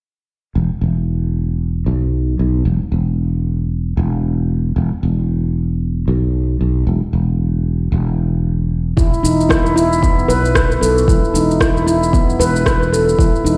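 Earthy and warm, this organic downtempo fragment, cut from a longer piece, moves at 114 BPM in 4/4 with a swung 16th-note feel, opening at 0.6 seconds on a growly, punchy fretless electric bass that sustains low on an E5 chord under a filter sweep, lush chorus and sidechain pumping. At 9.0 seconds a ringing, meditative stainless-steel handpan enters up front with fingertip arpeggios through a digital delay, joined by a deep, tape-colored, layered electronic kick and an overdriven electronic shaker and rim click. The whole sounds as if played on a big sound system in a bare stone room with light reverb, running to 13.6 seconds.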